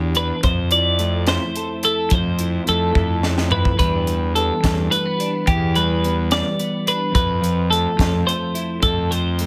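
The recording sits in a light reverb, with the drums, bass and the accompanying guitar placed up front. This short cut from a longer math rock and midwest emo piece moves at 72 BPM in a straight 6/8, its mood wistful yet bright. One twelve-string electric guitar carries the accompaniment, clean and compressed with an ensemble chorus shimmer, while a second twelve-string plays twangy picked arpeggios higher up. A fuzz fingered electric bass growls with overdrive underneath, and a crisp fusion drum kit in a small, pumping room brings a high-tuned snare and punchy kick alongside hi-hat and toms. The harmony opens on Fmaj7, a drum fill at 3.0 s leads into a shift to Em7 at 3.8 s, and Fmaj7 returns at 7.2 s.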